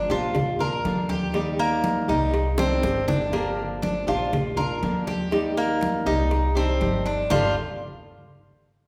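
Cuban son with a guajira lilt, this brief, nostalgic and danceable cut from a longer piece moves at 121 BPM in G minor, cycling twice through Bb, Eb, Cmadd9 and Gm7. A metallic, double-strung tres picks arpeggios up front over fingerpicked flamenco guitar with audible finger squeak, while a woody, thumpy pizzicato upright bass on gut strings anchors the low end. Warm, thick-skinned, medium-tuned congas ring out in the live room, while tight, high-tuned cowbell and bongos played with hard hands sit in the background, with a drum fill from 2.6 to 3.3 seconds, all set in the lush reverb of a recital hall.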